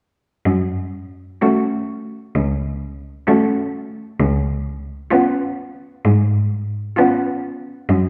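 Over a clear cello bass that sounds from 0.5 s, a bright, intense bowed cello enters at 1.4 s to sing the melancholic, solemn melody with light vibrato and a smooth top, together with a rich, expressive cello with soft attack and portamento and a focused second-line cello, in this lyrical, rubato classical passage for cello ensemble, heard from further back in a wet recital hall and cut from a longer piece.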